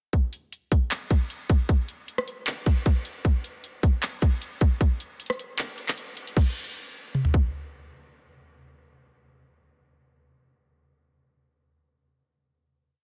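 The recording is dry and close, with a dense, heavily limited modern master that puts the beat up front. This brief, complete hip hop piece in 4/4 carries an eerie, melancholic mood, built entirely from an electronic trap drum kit playing a half-time feel. The produced kit brings a hard-clipped kick, warm hi-hats with fast rolls, handclaps, rim clicks, toms and a crash cymbal. A hook runs from the opening to 6.4 seconds, with a short break in its final stretch from 5.6 seconds, and then a final hit arrives at 6.4 seconds. The drums stop at 7.4 seconds, and the final hit section lasts until 9.5 seconds.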